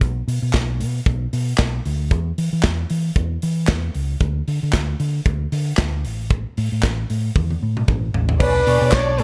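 Sultry and danceable, this short disco cut moves at 114 BPM in 4/4 with a light 16th-note swing, centred on B dorian. A round, dark hollow-body electric bass sits up front with a punchy, amped tone beside an acoustic studio drum kit in a small room, its tight kick, medium-tuned snare, hi-hat, handclaps, toms and crash cymbal also placed close. The harmony moves from B minor through a chordless stretch to an A power chord, and a drum fill from 7.4 seconds leads into a Bm69 chord at 8.4 seconds. At that point three new parts enter together. A warm flugelhorn takes the melody up front with light vibrato, scooped notes and a jazz solo style, while a rich, bowed string ensemble adds a smooth, even second line. Further back, a picked electric guitar at the edge of break-up, compressed and touched with wah, fills in the accompaniment, all set in a studio ambience.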